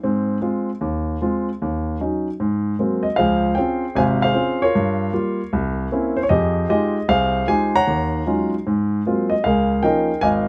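A grand piano opens this solo jazz excerpt on an Ab6 chord, playing alone from 0.0 to 10.5 seconds in a relaxed, playful mood. The tempo sits at 153 BPM in 4/4 with a swung eighth-note feel, and the piece is in Ab major. The piano spans from Ab1 up to Bb5, and its sound is intimate and natural, placed up front with the clatter of the action clearly audible. Close, detailed microphones and light reverb keep the instrument near and personal. The harmony moves through rich chords such as Ebm7, Dbmaj7, C7b9, Fm9 and Ab13 before settling on a Db69 near 9.4 seconds, with a new section beginning at 3.2 seconds.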